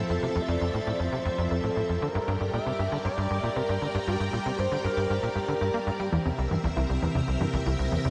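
Cosmic and luminous, this fragment of ambient, sequencer-driven space music moves through Fmaj7, Gm and C7 in a dreamy mix soaked in lush hall reverb. A punchy, nasal sequencer bass riff sits up front beside sustained, vintage string machine chords with ensemble chorus and shimmer reverb, while a shimmering, retro pulse-width lead with vibrato carries the melody until 5.8 seconds. At 6.1 seconds a warbling, lo-fi pluck enters with detuned arpeggios through chorus and delay.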